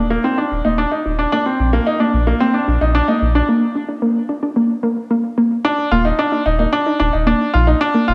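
A clear baby grand piano riff, carrying its own tape echo, opens the piece up front alongside a warbly, dusty synth pluck playing arpeggios, its nasal, detuned tone coated in chorus and tape echo, while a round, deep sub bass anchors the low end. This tender, luminous piano-and-strings electronica fragment builds up, eases into a break at 3.5 seconds, then arrives at the drop at 5.6 seconds, heard through a wet recital-hall reverb with a touch of small-room ambience.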